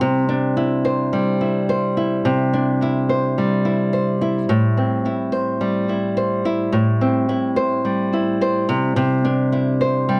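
A pop excerpt for solo nylon-string guitar, heartfelt and carefree in mood, moving at 107 BPM in a straight 4/4 in C major. The guitar is fingerpicked and sits up front, its acoustic tone dark and small, spanning A2 to C5 with a digital delay on it. The harmony rests on Cadd9, shifts to Am7 at 4.5 seconds, and returns to Cadd9 at 8.7 seconds. Light reverb gives the room a gentle sense of space around the single instrument. The passage runs 10.2 seconds, cut from a longer piece.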